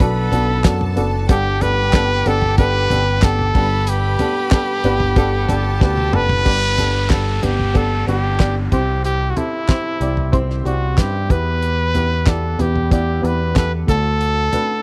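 A dry, close 1970s-style studio sound frames this anthemic, uplifting piano-driven pop in G major at 93 BPM, where a bright, vibrato-laden trumpet carries the melody up front over a worn, woody and slightly detuned upright piano, a picked electric bass with a direct, modern edge, and a damped acoustic drum kit with a fat snare and tight kick. A smooth, evenly bowed violin section sits in the background as a second line until 6.4 s, dropping out as a drum fill leads into a new section. Here the chords settle through G, C, Em and D, and a faint electronic downlifter drifts underneath from 6.5 to 11.6 s.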